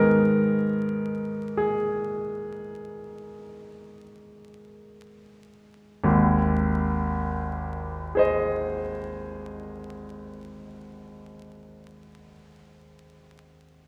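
In a slow, rubato 9/8 that moves at about 24-33 dotted-quarter beats per minute and slows through the opening 6 seconds, this melancholic, mournful romantic nocturne for solo grand piano dwells on G# minor before turning to G# major at 6.0 seconds. The piano has a brilliant, natural tone with short sustain and sits up front, spanning G#1 to D#5. It is set in a reverberant recital hall heard from further back in the room, with a layer of vinyl crackle, and the passage is cut from a longer piece.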